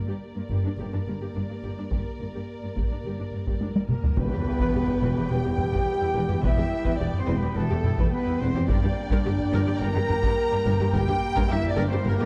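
Heroic and dramatic, this cinematic orchestral film-score excerpt sets a lush violin section melody in the background and a chamber violin second line over mellow French horn chords, vibrato-rich violas, cellos and portamento double basses, while close, dry taiko drums with heavy sticks enter up front at 1.9 s, a very quiet cymbal swell and tam-tam add bright shimmer, and a pure, distant concert flute joins at 3.9 s. At 4.2 s a band accent and impact land, followed by a huge sub drop, as a tight trombone section joins, all in a dark production with moderate scoring-stage reverb.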